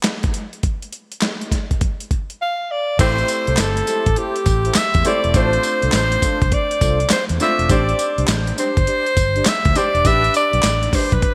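A breathy alto saxophone leads this slick, bouncy new jack swing excerpt, its intimate, whispered subtone and light vibrato placed up front from 2.4 seconds in a jazz-style solo line. Beneath it, a gritty, overdriven sampler-style drum kit with a thumpy kick, medium-tuned snare, handclaps, hi-hat, tambourine and crash cymbal sets a 102 BPM groove with a swung sixteenth feel and gated reverb, opening alone before the saxophone enters. At 3.0 seconds a polished concert grand piano, a round, foam-muted fingered electric bass and detuned sawtooth synth brass stabs with chorus join together over chords moving from Am7 through Dm7/A and Csus2 to G/A in A minor. The synth brass sits dark and in the background with a filter sweep, while the amped bass stays punchy and the piano adds clear, deep-bottomed accompaniment. Light digital ambience and bright 1980s-style production give the R&B track a glossy sheen.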